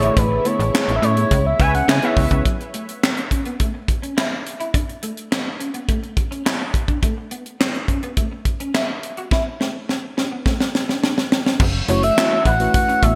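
This excerpt of danceable, funky early-eighties boogie funk opens with the full band at once. A smooth, expressive sawtooth synth lead carries the melody, with vibrato and chorus, over fat, detuned analog synth brass playing a second line in the background. A mellow, slightly out-of-tune tine electric piano, a dark, reedy chamber string section holding sustained chords, and a snappy FM bass with a metallic attack fill out the opening. By 2.5 seconds only the clean, picked electric guitar riff and the tight funk drum kit remain. The kit has a high-tuned snare, handclaps, hi-hat and gated reverb, and a drum fill begins at 9.3 seconds. At 11.6 seconds the bass and strings return, and the lead and electric piano follow shortly after, all within a bright 1980s-style digital production with moderate plate reverb and studio ambience.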